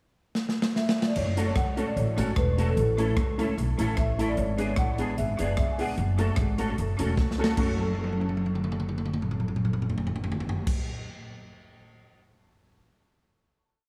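A punchy, up-front swinging drum kit with dark cymbals and a side-stick backbeat drives this mischievous, energetic ska piece in F# minor at 150 BPM, opening with a fill before a woody, growly pizzicato upright bass enters at 1.2 seconds with a walking line. A mellow marimba played with soft mallets carries short call-phrase motifs, while a bright, clean semi-hollow guitar with ensemble chorus and a jangly, detuned honky-tonk piano chop the off-beats over F#m, A and G#dim. Dub echo trails the drums, marimba, guitar and piano in a dry mix, and further drum fills carry the piece into its final chord at 7.6 seconds.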